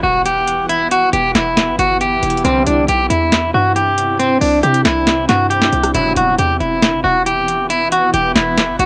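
A dry, close home cassette recording carries this hard-hitting, menacing trap cut, taken from a longer hip hop piece in E minor at 137 BPM with a half-time feel in 4/4. A barely audible electronic impact opens the clip, and at 0.3 seconds a booming analog drum machine comes in up front, with a tonal snare, handclaps, metallic hi-hats and a rim click, the snare, clap and hats set in a short room. Beneath it, a punchy, tight 808-style bass with a sine body and a noise layer hits fast and decays quickly. Leading the melody is a twangy, fingered electric guitar at the edge of break-up, slightly broken-up and placed up front, while a bright granular cloud pad holds blurred, evolving chords with a slow attack, long release and its own reverb. In the background, an edgy sync-sweep polysynth with a nasal, detuned sawtooth tone, chorus and tape echo adds brief stabs, first at 2.4 seconds under the move from Emadd9 to Csus2, then again at 5.9 seconds as the harmony returns to Emadd9.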